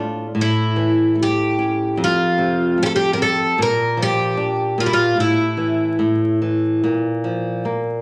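Loosely timed and rubato, this excerpt from a fado-style ballad moves at around 74 BPM in 2/4, mournful and full of longing. A bright flamenco guitar, fingerpicked with audible finger squeak, carries the accompaniment from the opening moment to the end at 8.0 s, ranging from F2 to F4. At 0.4 s a picked twelve-string acoustic guitar takes the melody, its boxy, shimmering, octave-doubled tone staying between E4 and Bb4 until it falls away at 6.4 s. Both guitars sit up front against a wet, large studio reverb, and a layer of vinyl crackle lends the recording an aged surface. The harmony passes through A, F and Bb before settling on A5 and Bb5, with the instruments tuned to A4 = 439 Hz.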